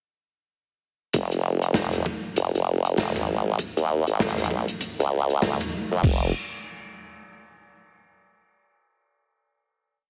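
A swung 98 BPM groove in 4/4 and F minor drives this short, gritty, swaggering glitch hop piece: from 1.1 seconds, a thumpy, pitched-down electronic kick plays alongside a polished acoustic big-band kit of closed hat, rim, snare and crash playing an edited swing beat. Up front, a sawtooth-and-sine wobble bass with formant filtering, chorus and tube saturation plays phrases with changing wobble speed through a build-up that runs to 6.0 seconds, followed by a final note that lasts until 8.5 seconds. The mix carries light reverb and a heavily compressed, radio-like sound.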